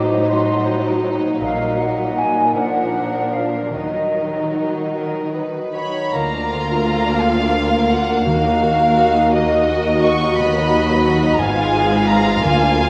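A lush violin section carries the melody of this solemn, elegiac slow movement for symphony orchestra, its bowed, vibrato tone smooth and even. A second, more distant violin section traces a rich second line beneath it, and the violas fill in a focused, warm accompaniment while the cellos hold the bass. A concert harp rings out arpeggios in the background, and a mellow French horn section sustains soft-edged chords until about 5.8 seconds, as an airy, straight-toned flute ensemble adds its own distant second line in the opening moments. The double basses join at 1.4 seconds to deepen the bass, and very quiet timpani struck with hard mallets sound close and dry from 8.3 seconds. The slow 6/8 pulse moves with rubato through minor-key harmony, and a reverberant concert hall gives the strings a lingering bloom in this passage cut from a longer piece.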